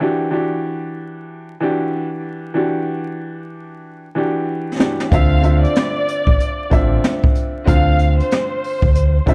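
Worn, warbling cassette tape with vinyl crackle and a small-room ambience colors this moody, reflective boom-bap hip-hop excerpt at 94 BPM with a swung feel. A woody, vintage upright piano with short sustain plays the accompaniment alone over Em9 until a brushed jazz kit with a boomy kick and high-tuned snare enters at 4.8 seconds. At 5.1 seconds the chord moves to Dm9 as a round, punchy dub bass lands up front and a lush, bowed violin section carries a smooth melody with vibrato.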